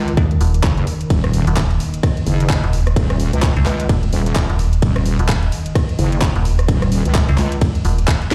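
A bright, detuned sawtooth pad with a slow attack and chorus opens this gritty, bouncy bass house excerpt in Eb minor, holding sustained chords in the background while a heavy, detuned wobble bass with chorus enters at 0.0 seconds, both pumping to the sidechain. At 129 BPM in 4/4 with a 16th-note swing, an overdriven garage drum kit brings a cracking snare, handclaps, hi-hat, ride cymbal and rim click. A tight, up-front electronic kick and a metallic, digital FM bass with a fast attack and decaying notes join at 0.2 seconds, the whole sounding as if played on a big sound system in a bare room.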